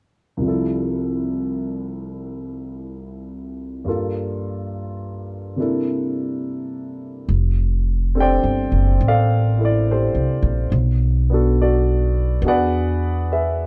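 Intimate and tender, this slow jazz ballad excerpt at 70 BPM swings gently in F major. A warm baby grand piano with long sustain carries the accompaniment from the start through chords such as Fmaj9/C and C13, and a woody pizzicato upright bass joins up front at 7.3 seconds over F69, Bm7 and E9 until 13.7 seconds, all framed by moderate studio reverb and a dark, warm production.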